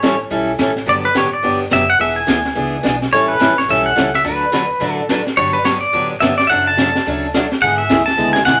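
A twangy, compressed pedal steel guitar carries the melody up front with fingerpicked slide lines and volume swells in this swinging, playful western swing excerpt, backed by a bright, boxy picked archtop guitar with fresh strings, a woody, thumpy pizzicato upright bass sitting low in the mix, and a dark, smooth brushed drum kit with a high-tuned snare and hi-hat, with a wet studio reverb on the recording.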